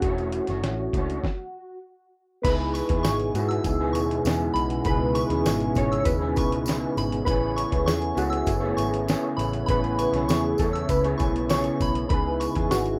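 A rough, roomy home-demo sound frames this nostalgic, hazy bedroom-pop piece at 99 BPM, where round, warbling electric-piano-like synth keys carry the melody over slightly broken-up electric guitar, a mellow, flute-like tonewheel organ turning through a slow rotary speaker, a dark, foam-muted bass and an up-front, muffled sampler-style drum kit with a thumpy kick and fat snare; after a brief stop, a pure FM synth bell and a jingly tambourine enter at 2.4 seconds, followed by a swirling, airy phased analog pad at 3.2 seconds.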